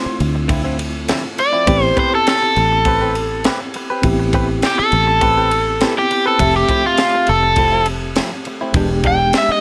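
Straight-eighth soul blues in A minor at 102 BPM, this brooding, soulful excerpt from a longer piece is led by a crunchy, bright overdriven guitar soloing up front across the full 9.6 seconds. A mellow, reedy electric piano with tremolo fills in beneath, while a twangy, compressed clean guitar, recorded direct, adds picked stabs through tape echo. A round, foam-muted fingered bass and a tight funk kit with a high-tuned snare and punchy kick play through the Dm9, Am9, Fmaj7 and E7#9 changes in a small room.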